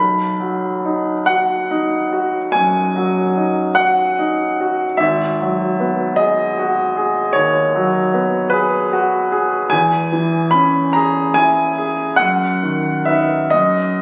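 Captured on a phone in a recital hall, this 14-second fragment of a longer piece sits in a moderate reverb of about 1.5 seconds, with an intimate, up-front baby grand whose action noise is plainly audible. It is a dreamy, nostalgic romantic nocturne for solo piano in B major and 12/8, moving in free rubato at roughly 41-52 dotted-quarter beats per minute across a range from G#1 to B5. The instrument's clear, natural tone and long sustain carry the harmony from B through G#m7 and C#m/E before arriving on B/F# at 12.2 seconds.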